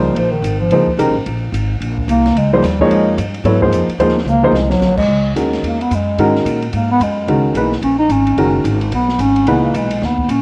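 Cassette tape hiss-era softness and a moderate spring reverb give this home-recorded modal jazz fragment, cut from a longer piece, an intimate, searching and spiritual air. At a brisk 219 BPM in 4/4 with a swung eighth-note feel, it moves from Bb dorian to C# dorian at 5.1 s, passing from Bbm11 through Ab13 to C#9sus4. Up front, a mellow bass clarinet carries the solo throughout, its jazz-style phrasing marked by vibrato, scooped notes and a smooth top. Beside it, a baby grand piano supplies dark, close accompaniment with audible action noise and short sustain until 9.9 s, while a woody, pizzicato upright bass on steel strings anchors the low end. A small-room acoustic drum kit sits further back, with shadowy cymbals, a medium-tuned snare and a boomy kick, and adds a brief fill at 4.3 s.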